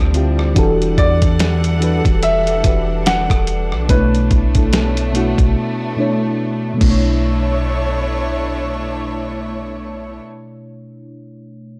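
This moody, sensual contemporary R&B excerpt opens with a mellow FM electric piano, round and full-bodied with chorus and phaser, alongside close, bowed studio strings holding sustained chords with light vibrato and a pumping sidechain, plus a deep, sine-like 808-style bass. At 0.1 seconds a dusty, sampler-style drum kit joins up front, with a thumpy kick, fat snare, rim click, hi-hat and crash, its compressed, tape-coloured sound carrying the 72 BPM groove in 4/4 with a 16th-note swing. A dark concert grand piano plays a short melody through tape echo from 1.0 to 5.1 seconds, its notes mellow and quick to fade. The harmony moves through Dm11 and Em11 before settling on Bm11 in B minor, and a break arrives before the drums drop out at 7.0 seconds. The electric piano carries on alone after the strings and bass stop, in a dry, gritty recording with little reverb.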